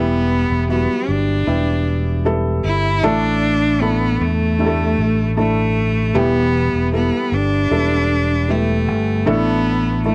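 A clear, focused bowed cello carries the melody of this heartbroken pop ballad, its vibrato sitting up front and trailed by a slapback echo. Beneath it, a felt-muted upright piano supplies soft, mellow accompaniment with audible action noise that lends an intimate, natural feel. A fingered electric bass anchors the low end with an amped, punchy tone placed well forward. All three parts play throughout the 10.1 seconds at a slow 77 BPM in a straight 4/4, moving in E minor between Em and Asus4, with the change to Asus4 first arriving at 3.0 seconds. The sound is that of a dry, close 1970s-style studio with light reverb, and the passage is a fragment cut from a longer, deeply emotional piece.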